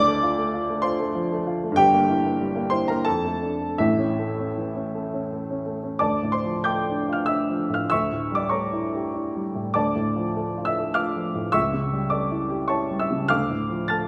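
A woody, polished upright piano sits up front in this romantic classical character piece for solo piano, played in D minor with a passionate, brooding mood. The tempo moves freely between 78 and 104 BPM in 3/4 time, with a rubato feel that lets the phrases breathe. The piano spans from deep G1 bass notes to high A6 in the treble, and it is tuned slightly below standard pitch, to A4 = 438 Hz. Its opening phrase circles D minor through a diminished chord before settling on A major, and a new section begins at 6.0 seconds, where darker A7b9 and A7 harmonies pull repeatedly back to D minor. The instrument rings in a reverberant recital hall with a 1.5-second decay, and the passage is cut from a longer piece, ending on D minor at 13.3 seconds.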